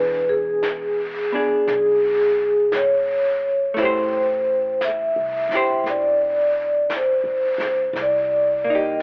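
Intimate and late-night, this slow, swung jazz ballad fragment at 57 BPM puts a ringing, metallic vibraphone up front, its dark, smooth melody struck with medium hard mallets and shimmering with motor vibrato, over a clean, picked accompaniment from a hollow-body electric guitar and a thumpy, woody pizzicato upright bass sitting low in the mix, while brushes on a natural-sounding snare and hi-hat join at 0.6 s as the harmony moves through E7, Am7 and Cm7, with cassette tape coloring the vibraphone, guitar and drums inside a home-recorded, telephone-like sound bathed in moderate spring reverb.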